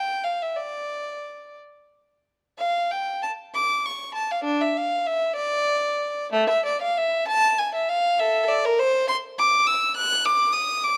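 In a rubato 6/8 at 58-70 BPM counted in dotted quarters, this introspective, solemn fragment of a baroque-style suite movement in D minor features a single bowed violin, up front and detailed, with a reedy gut-string period tone ranging from A3 to F#6, set in light reverb, where a brief opening passage gives way at 2.6 seconds to a longer one that runs to 11.0 seconds.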